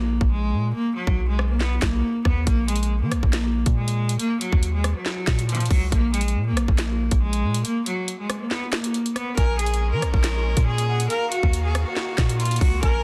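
Drill hip hop in a half-time feel with an ominous, dark mood, built on a nasal, earthy bowed cello melody with digital delay over a deep, sine-toned 808-style bass and an electronic drum kit of hard-clipped kick, sharp snare and metallic hats, all three up front in a dense, heavily limited master, and at 9.4 seconds a lush symphonic string section holding sustained chords and an airy flute second line with delay in the background join them in this fragment of a longer piece.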